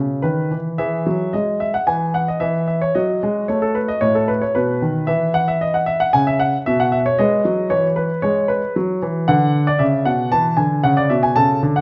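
A close, detailed recording places a clear, intimate grand piano up front in a moderate recital hall, its natural tone carrying long sustain and audible action noise. This cheerful, elegant classical-period sonatina in E major moves at 114 BPM in 4/4 with a rubato feel, the solo piano ranging from A2 to A5 across chords of E, B7/F# and Bm/D. The passage is cut from a longer piece and runs about 11.8 seconds.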